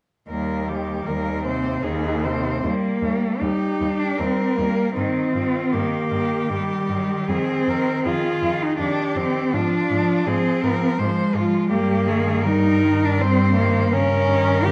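An up-front cello carries the second line with soft attacks, portamento and expressive vibrato, while another cello sings the melody above it in a smooth, even voice, and two more distant cellos supply the accompaniment and a focused bass. This tender, serene classical excerpt for cello ensemble moves in a rubato 3/4 at around 72-84 BPM in Eb major, its harmony passing from Eb through Fm7 to Eb7/G. A dark production and wet recital-hall reverb wrap the four bowed players in a rich glow.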